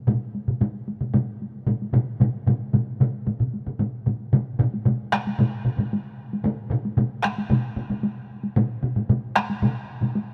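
Japanese traditional taiko drum ensemble music, powerful and ceremonial, moves at 113 BPM in a straight 4/4 through this short cut from a longer piece. A solo taiko part struck with hard sticks sits close and up front, sounding from 0.1 to 10.3 seconds. Two taiko ensembles played with heavy sticks run alongside it from 0.1 to 10.1 seconds, one compressed and saturated, the other close and dry, both pushed to the front of the mix. The whole performance sits in a moderate but huge ambient reverb with a long 4.6-second decay, giving the drums a vast, hall-like weight. The piece shifts into a new section at 4.3 seconds, carrying the ceremonial drive through to the end.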